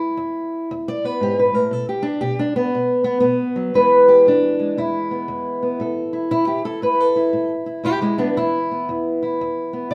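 A swung 4/4 groove at 117 BPM drives this swaggering, soulful acoustic country blues in E mixolydian, cut from a longer piece. A single fingerpicked old ladder-braced acoustic guitar sits up front with a dark, boxy tone, moving from E to B5 before breaking into a solo at 3.8 s over E, A5 and E5. A wet stone-room reverb gives it the feel of a live performance in one room.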